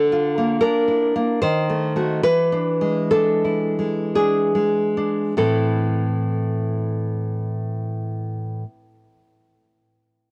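A fingerpicked nylon-string guitar carries this romantic solo classical piece alone, its fresh strings giving a full-bodied, deep tone placed up front. The mood is passionate and melancholic, in A minor and 3/4 time, with a rubato feel that drifts between 46 and 80 BPM. Over the first 5.4 seconds the playing slows, moving through Bb/D, D#dim7 and E7 before settling on Am as a new section begins at 5.4 seconds. The guitar ranges from A2 to B#4 and stops at 8.6 seconds, since this is a short cut from a longer piece. Light reverb surrounds it, and the sound of worn cassette tape adds a warbly pitch drift.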